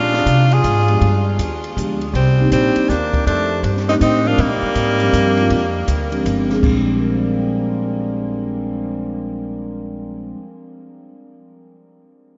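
Small-group swing and bop jazz in a relaxed 3/4 at 160 BPM, cut from a longer piece in Bb mixolydian, with a swinging feel and chords moving from Bb9 through G7b9, Cm7 and F13 to Bb13. An edgy, close-miked tenor saxophone carries the melody with light vibrato and analog delay, while a brilliant trombone with scooped notes plays a second line until both stop at 6.3 s, over woody pizzicato upright bass and a compact cocktail drum kit with a high-tuned snare and punchy kick. Mellow soft-mallet vibraphone, ringing with its motor off, enters at 0.9 s and plays on to 10.7 s, and the mix is soaked in a huge, dreamy reverb with its highs trimmed away.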